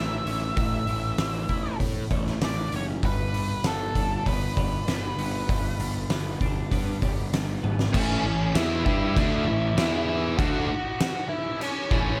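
Quiet-loud alternative rock with a restless, cathartic mood, this excerpt opens with a dark octave-fuzz lead guitar carrying the melody over chiming twelve-string electric arpeggios tinged by chorus and slapback echo and a growly fuzz bass, joined a moment later by an oversized, low-tuned drum kit with a fat snare, punchy kick and pumping stone-room sound. After a drum fill, at 7.9 s the twelve-string drops out and a bright high-gain guitar and a murky overdriven semi-hollow guitar crash in together on a heavy riff. The drums sit saturated and up front, the chords moving between A and G before shifting through E5 back to A.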